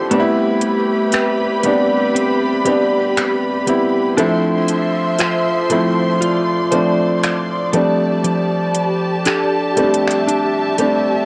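Contemporary R&B at a slow 59 BPM with a swung sixteenth feel in D dorian, this late-night, sensual excerpt from a longer piece moves through Am9, Dm9 and F69 chords over a cassette home recording with studio reverb. A clear, intimate baby grand piano with audible action noise sits up front, and a rich bowed string section with vibrato holds sustained chords. A clean, direct-recorded electric guitar picks compressed arpeggios through lush chorus and tape echo, while an electronic R&B kit with finger snaps and metallic hi-hat carries a tape-warm cassette character, and a barely audible downlifter ends at 4.2 seconds.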